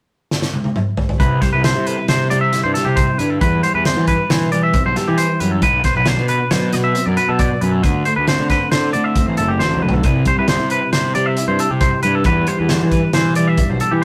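A math rock and midwest emo excerpt in a straight 5/4, bright and wistful, with a rough rehearsal-room sound and light reverb. A loose indie drum kit opens with a fill at 0.3 seconds, its fat snare and punchy kick sitting up front in a pumping room, and it adds another fill near 9.6 seconds. At 1.2 seconds the rest of the band enters: a clean, picked twelve-string electric guitar shimmers and twangs through compressed chords, while a twangy electric guitar plays up-front arpeggios high above. Underneath, a fuzz picked electric bass brings an overdriven growl. The harmony moves from Cmaj7 to Em7, Bm and D7 before circling back, giving the passage a hopeful yet longing cast.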